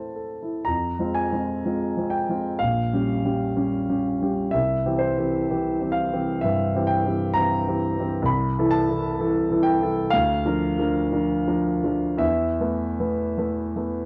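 A polished, present grand piano plays alone throughout this wistful, yearning fragment of a romantic classical nocturne, drifting at around 62 BPM with supple rubato through A minor, F minor, C and B-flat harmonies before settling on a suspended E chord at 12.2 seconds, all heard through light reverb and the worn, warbling pitch drift of old cassette tape.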